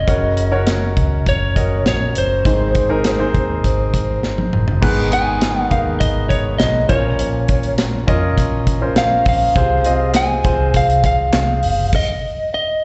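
Piano-driven pop with an uplifting mood, cut from a longer piece, in which a slightly broken-up, picked lead guitar carries the melody over an intimate concert grand with audible action noise and long sustain, both bathed in plate reverb and slapback echo, while a round, foam-muted electric bass and a dark, up-front acoustic drum kit with a tight kick hold the groove, a very quiet, crisp group handclap joins at 10.1 s, and a stop at 11.9 s leaves the guitar ringing on, the whole mix sounding like a live gig through a venue's PA in a moderate club reverb with a softened top end.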